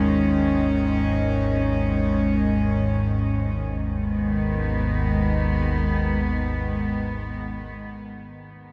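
A close, pure cello ensemble bowing soft-attack sul tasto chords floats up front over a deep, rumbling, wave-folded drone in this ominous, vast dark ambient fragment in free time, shifting from a bare G#5 to G# minor at 3.6 seconds, with the drone ending at 7.5 seconds and the cellos holding to 8.0 seconds, all set inside a huge, wet, long-tailed reverb.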